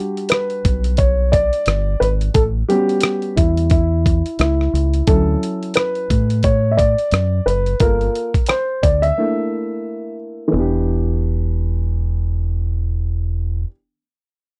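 A cool, nocturnal jazz-hop fragment rides a swung sixteenth-note groove in four, carried by a gritty, compressed sampler-style drum kit of thumpy kick, hi-hat and rim click that sounds re-recorded in a small room. A dark, boxy baby grand piano with short sustain takes the lead over rootless Em7 and A13 voicings moving through Dmaj9 and Gm9, while a round, punchy fingered electric bass sits deep underneath. The drums drop out at 9.2 seconds for a brief break on an A#maj7#11 over A before the music settles back on Em7 at 10.5 seconds, all captured in a dry, close 1970s-style studio sound.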